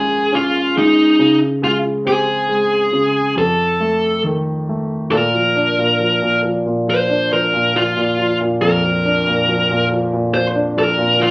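A straight 4/4 pulse at 69 BPM carries this tender, emotional pop fragment, tuned to A4 = 441 Hz and moving through Bbm7, Db5 and F7 before settling on Bb at 5.1 s, where a new section begins. Up front, a dark, distorted electric lead guitar with a bluesy, picked edge sings the melody between Eb4 and C5, while a smooth, vintage grand piano, also forward in the mix, supplies the accompaniment from F2 to D4. Both play throughout the 11.3 seconds, captured as a band performing live in one room and bathed in a wet studio reverb.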